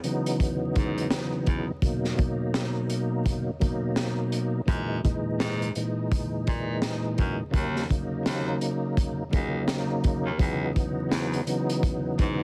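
A reedy, bright tonewheel organ and a crunchy breakbeat drum kit open this reflective, gritty boom-bap hip-hop excerpt together, the organ up front with key click, chorus vibrato and a slow rotary speaker turning its clean chords. The acoustic kit sits close in a small room, its punchy kick, high-tuned snare and hi-hat saturated and dark with a rolled-off top, all riding a swung sixteenth-note feel in 4/4. At 0.8 seconds a breathy baritone saxophone enters on the bass line, its soft attack, vibrato and whispered, intimate jazz tone giving the low end a vintage glow. The harmony moves from C#m11 through Bmaj7, F#13 and D#m7 before settling back on C#m11 at 10.4 seconds. Dense, heavily limited mastering and a layer of vinyl crackle lend the whole clip a dusty, compressed finish.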